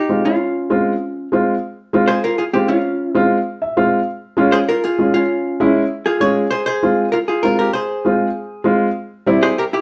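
A straight 4/4 Latin groove drives this danceable fragment cut from a longer piece. Up front, a clean, compressed electric hollow-body jazz guitar picks out the melody. Beside it, a dark, woody upright piano with audible action noise plays intimate accompaniment and adds a fill from 3.5 to 4.1 seconds. The two play live in one room under a wet studio reverb, moving from Fm to Db and back before landing on C at 9.0 seconds.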